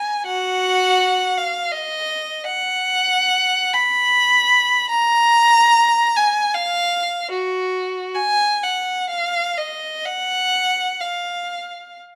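A rich-toned solo violin, bowed by one player and placed up front, sings a lyrical, nostalgic classical line in free time and F# major, ranging from Gb4 to B5 with expressive vibrato and portamento, captured by close, detailed microphones with light reverb in a 12-second fragment cut from a longer piece.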